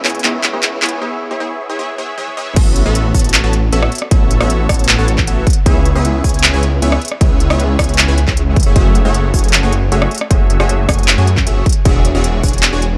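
A punchy, detuned supersaw stab riff coloured by cassette-tape grit, tape echo and a low-pass filter sweep opens this lush, dreamy future bass excerpt at 155 BPM in a half-time feel, joined from the start by a thick, chorused, tube-saturated detuned saw bass placed up front and a close, small-room trap kit with crisp hats, claps, rim clicks, toms and crash, all overdriven, whose fills and a brief break build until the drop at 2.6 seconds brings in a layered, overdriven electronic kick, while sidechain pumping breathes through the stab and bass over chords from C#m7 to E13 in a dry mix.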